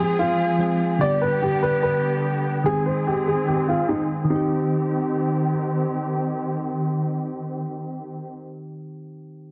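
Hip hop excerpt at 146 BPM with a half-time feel in C harmonic minor, melancholic yet hard-hitting, where a dark, boxy baby grand piano with audible action noise carries a short melody through low-pass filtering and digital delay until 5.5 seconds, soft, round electric-piano-like synth keys with chorus keep accompanying until 9.5 seconds, and a lush, bowed symphonic string section with expressive vibrato holds sustained chords until 8.3 seconds over a progression from Fm through G and Ab to Cm, with a filter sweep across the opening 4.3 seconds, light studio reverb and a dense, heavily limited modern master.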